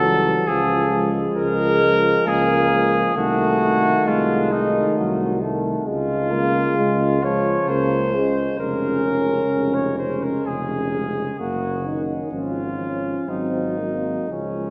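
A slow, serene hymn for brass band in three-time opens with all five parts sounding together, the flugelhorn carrying the melody up front with a warm, distant tone. Beneath it, a very quiet, close-miked French horn section adds a mellow second line touched with light vibrato. The euphonium and a dark trombone, the latter set back in the background, fill out the accompaniment, while the tuba anchors the bass with a soft attack. The rubato phrasing and a lush church reverb give the ensemble a roomy, devotional glow. The harmony moves gently from the home chord through a diminished colour at 3.2 s before settling toward a dominant seventh at 13.3 s, where this fragment of a longer piece ends at 14.7 s.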